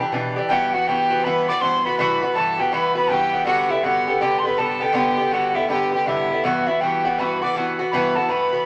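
A large studio reverb gives this short cut from a longer piece a wet, roomy sheen. It is a spirited, driving Celtic hornpipe in E minor at 162 BPM in 4/4, with a swing on the eighth notes and tuning set a touch high at A4 = 441 Hz. A metal mid whistle carries the melody across a range of E5 to D6, its airy, close-miked tone marked by tongued chiff and vibrato. Beneath it, a single bowed fiddle plays a clear, biting, slightly nasal second line from E4 to D5, sitting lower in the mix. An up-front acoustic Irish bouzouki, picked on double strings, supplies the accompaniment from G2 to G4 with a metallic edge. The harmony moves from Em7 into Emadd9, shifts to G at 3.5 seconds, and returns to Emadd9 at 6.4 seconds before the clip ends at 8.7 seconds.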